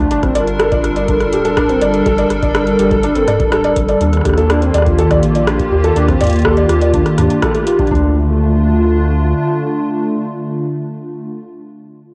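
A hollow, flute-like pad sits up front in this cerebral, glitchy IDM piece cut from a longer work, holding sustained chords with a slow attack, a long release and a detuned, chorused shimmer softened by cassette tape. Alongside it, a felt-muted upright piano plays intimate, vintage-toned arpeggios that trail through an analog delay, while a round, dark analog bass anchors the low end with deep, sustained notes. A booming analog drum machine adds metallic hi-hats, rim clicks and toms over a deep electronic kick in a straight 4/4, both tinged by tape. The harmony moves from Gmadd9 to Eb, and the full band lands an accent at 7.4 seconds before the drums and piano drop away around 8.0 seconds, leaving the pad and bass to settle onto Dm. The home cassette recording carries a moderate spring reverb across the whole piece.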